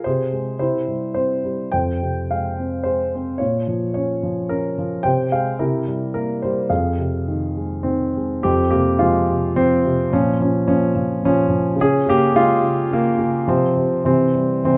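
A dark, mellow concert grand piano opens alone and plays this lyrical classical solo, heard as a brief portion cut from a longer piece. The mood is bittersweet and cool, set in F minor in 3/4 time at around 108 BPM, with a rubato feel that lets the phrases breathe. The piano sits up front, its deep bass anchoring a range that stretches from F2 to G5, and it carries the whole 14.8 seconds by itself. The harmony moves through F minor and B-flat minor with dominant C chords pulling back home, and a turn to D-flat major near 11.8 seconds brings a brief lift before the close on C. A moderate recital hall reverb surrounds the instrument, giving it a sense of space, and a second statement of the opening material begins at 8.4 seconds.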